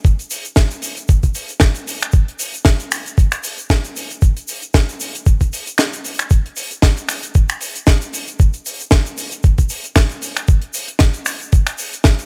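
A gritty, thumpy, compressed electronic kick and a dry, tight acoustic funk kit with finger snaps, hi-hat, shaker and a high-tuned snare sit up front from the start of this sunny, feel-good nu-disco excerpt at 115 BPM in 4/4 with a light 16th-note swing, in a close, nearly reverb-free sound, and the kick briefly drops out between 5.8 and 6.3 seconds.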